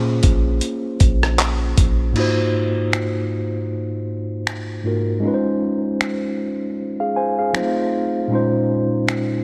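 Sensual and moody, this contemporary R&B excerpt moves at 78 BPM in 4/4 with a 16th-note swing. A mellow tine electric piano sits up front through the whole passage, its clean, direct tone carrying the harmony from Bbm9 through Ab13, Dbmaj9/Ab and F7 before settling on Bbm11. A deep, boomy 808-style bass with a sine-like, fast-attack, decaying sound plays only in the opening, dropping out at 2.1 seconds as a break begins. The sampler-style drum kit brings a gritty, compressed character with a thumpy kick, crash cymbal, hi-hat, rim click, finger snaps and handclaps, its tape-warm sound caught in a small room and placed up front. Light reverb and a digital ambience give the mix a soft sense of space.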